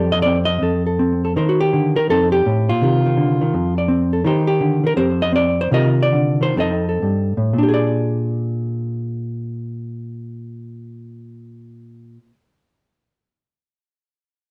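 The rhythm swings in 4/4, with the tempo moving freely between 113 and 172 BPM in a rubato feel and easing into a slowdown from 4.2 to 7.5 seconds. This is a short solo jazz fragment cut from a longer piece, relaxed and playful in mood and set in Bb mixolydian, tuned slightly sharp at A4 = 441 Hz. A single electric hollow-body jazz guitar, clean and fingered, carries everything from F2 up to Eb5, its dark tone placed up front and given a slapback echo. The harmony circles through rich colors such as F9, Eb6, Cmadd9 and Cm11 before settling on Bb6 at 7.5 seconds. The sound is dry and close, in the manner of a 1970s studio, with only a moderate booth ambience around the instrument.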